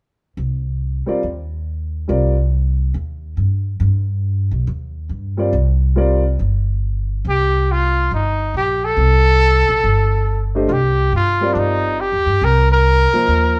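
Modal jazz in C dorian at 139 BPM with a swung 4/4 feel, cool and hypnotic, cut from a longer piece and sounding like a band playing live in one room with moderate studio reverb. A woody pizzicato upright bass on steel strings carries the low end up front from 0.4 seconds, while a warm, natural grand piano drops in short accompanying figures over the Cm and later Cm7 harmony. At 7.3 seconds a clear, present trumpet takes the solo melody with vibrato, sitting up front and ringing through to the close.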